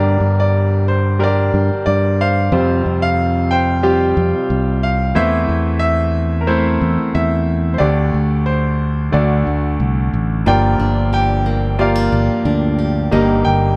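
A straight 4/4 pulse carries this intimate, melancholic acoustic folk-pop ballad, cut from a longer piece, with a bright concert grand piano up front on the melody, its brilliant upper notes set against deep bass, while a fingered electric bass holds the bottom with a direct, amped tone. At 10.5 s a picked, plugged-in steel-string acoustic guitar enters lower in the mix with arpeggios, a touch of finger squeak audible, as the harmony moves through suspended chords toward Gm7 and Eb/G. Light reverb and a dark, warm production keep the mood close and private.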